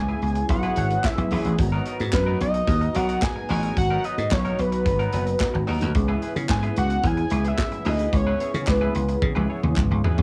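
This excerpt has the sound of a home recording on cassette, with a light reverb around it. It is early-eighties boogie funk at 110 BPM in 4/4, with a straight, funky and danceable groove that moves from C#m7 to G#m9 and back. A fat, detuned analog lead carries the melody through a phaser, mellow and sustained with vibrato, while dark, round synth brass sits in the background with chorus. A second synth brass line surfaces briefly in a lower register, first at 0.9 seconds. Underneath, a bright, foam-muted thumbed slap bass punches up front, and a clean, compressed semi-hollow guitar picks a riff with subtle chorus. An airy, polished drum kit with a punchy kick, medium-tuned snare, hi-hat, toms and handclaps is joined by crisp, close group handclaps, and band accents mark the opening and closing stretches before a drum fill at 9.2 seconds.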